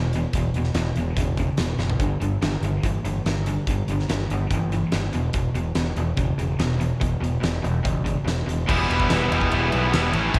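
A growling fingered electric bass sits up front, its overdriven, punchy tone giving this driving, brooding classic rock excerpt its low-end bite. Beside it, a huge arena drum kit rings out in a big room with a fat snare, punchy kick and bright cymbals, marking a fill at 1.8 seconds. Two picked, overdriven electric guitars hold the riff further back: one bright, the other sludgy and dark, moving through E5 and G5 power chords. At 8.7 seconds the music shifts to an E minor chord as a cranked stack guitar enters up front, bright and double-tracked. A very quiet, jingly tambourine slips in at 9.1 seconds, and a light studio reverb gives the mix a touch of space.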